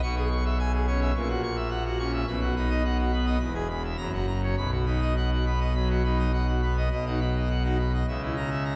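A wet scoring-stage reverb surrounds this short cut from a longer classical organ toccata, yet the instrument still sits up front. A solo pipe organ plays full organ throughout, its mixtures giving the sound a brilliant, glittering top over low notes that reach down to E1, while the upper range extends as high as C#6. The mood is stormy and majestic, in a steady, straight 4/4 with a romantic voicing of the harmony. The opening passage moves from C#m7/B through F#7/A# to a firm B, then steps through E and F# back to B at 4.6 seconds. At 6.9 seconds a new section begins, and the fragment closes on a tense A#dim/C# at 8.1 seconds, ending unresolved as the 8.8-second clip runs out.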